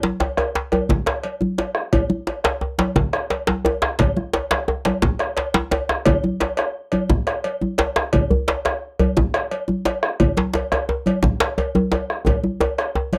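West African traditional drum ensemble music, driving and powerful, moving in a straight 12/8 feel. Congas and two djembes sound from the start, with bombo and cowbell joining at 0.2 seconds to fill out the full ensemble. The congas are thick-skinned and damped, played with soft hands, while one djembe is medium-tuned and struck with hard hands and the other is tight and cracking, sitting up front. The bombo gives a round, vintage, band-limited low end placed forward in the mix, and the cowbell adds a metallic edge with a small-room character. A drum fill arrives at 12.3 seconds near the close of this short cut from a longer piece, captured in a dry, close 1970s-style studio sound with light reverb.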